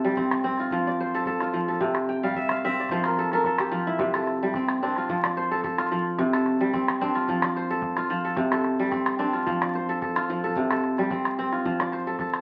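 Crackle from a very old 78 rpm record sits over a wet studio reverb, lending this short cut from a longer piece of West African traditional music an aged, roomy sheen. At 110 BPM in 4/4 with a light swing on the sixteenths, a fingerpicked kora carries the piece up front, its bright, ringing arpeggios spanning C3 to G5 in C mixolydian. The harmony alternates steadily between C5 and F. A small calabash joins at 0.2 seconds, close and dry, adding a quiet percussive layer beneath the strings. Between 2.1 and 4.0 seconds the kora breaks into a crisp fill before settling back into its hypnotic, warm cycle.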